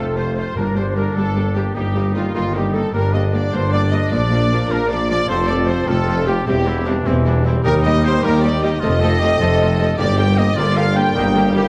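Cinematic, triumphant and adventurous orchestral music in 12/8, where a lush violin section carries the melody over second lines from clarinet, a clear violin section, a hollow flute and an oboe, while a viola section accompanies, dark French horns and trombones hold sustained chords beneath mellow trumpet stabs, double basses, cellos and a punchy tuba anchor the bass, and round, soft-mallet timpani sound at 0.6 seconds and return from 10.0 seconds, set in a moderate scoring-stage reverb.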